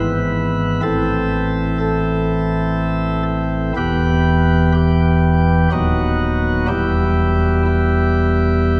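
Sparkling, chiffy flute stops of a solo pipe organ, bright and up front in baroque voicing, open this reverent, majestic classical chorale in A minor at a rubato 62 BPM in 3/4, moving from E/G# through Am, Em and B/D# back to Em across 8.8 seconds of a longer piece, with the organ's range reaching from deep D#1 to B4 inside a wet church reverb that rings for 3.4 seconds.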